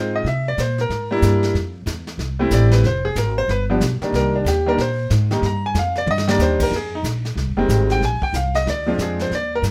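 Smoky and cool, this short cut from a longer jazz piano trio swings at 186 BPM in 4/4, centred on C minor. A bright upright piano carries the melody as a solo from the opening, its brilliant, polished tone ringing with long sustain across a range from Eb3 to Bb5. Close behind, a pizzicato upright bass with steel strings gives a woody, growly foundation, sitting up front in the mix. The brush drum kit enters at 0.3 s, further back, with dark cymbals, a medium-tuned snare and a boomy kick, and it plays a short fill at 6.1 s before the section restarts at 6.7 s. Harmonies move through chords such as C7, Fmaj7, Cm7 and Bb7, all set in a light reverb that suggests a studio room.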